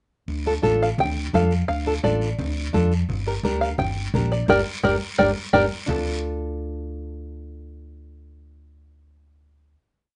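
A fiery, passionate cumbia in D minor at 172 BPM opens with a dark, round hollow-body electric bass and raspy guiro at 0.3 seconds, joined by fingerpicked nylon-string guitar chords, ringing congas played with soft hands, and a twangy, plunky open-back banjo melody up front, moving from Dm to Gm before a band accent and drum fill lead into a final Dm chord at 5.9 seconds, all set in a moderate studio ambience.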